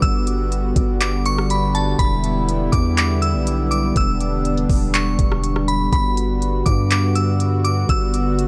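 Atmospheric cloud-rap hip hop at 122 BPM in a half-time 4/4 feel, this short cut from a longer piece feels blissful and floating, set in G lydian with a tuning of A4 = 438 Hz. A detuned sawtooth analog pad holds sustained chords up front, its slow attack and chorus giving a smooth, mellow cushion as the harmony moves from Gmaj7 to Em7 at 2.0 seconds and back to Gmaj7 at 5.9 seconds. Above it, a crystalline FM synth bell carries the melody between A5 and E6, its fast attack and decay full-bodied, treated with chorus and delay. Underneath, a deep 808-style bass rings out long sine notes from E1 to G2, mellow and forward in the mix. The electronic R&B drum kit pairs a knocking kick and smooth hi-hats with handclaps and rim clicks, colored by tape-like warmth and vintage 12-bit sampler grit, all within a light reverb.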